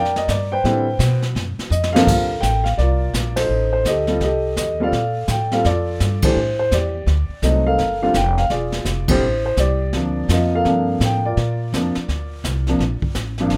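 Swinging and late-night, this jazz piano trio in G minor moves at a brisk 168 BPM with a lilting swing feel. An intimate, boxy upright piano carries the melody up front, with audible action noise and long sustain. Beneath it, a woody pizzicato upright bass with steel strings anchors the low end, and a brushed drum kit with dark cymbals and a boomy kick adds a fill from 1.7 s into the second section, followed by three band accents under light reverb.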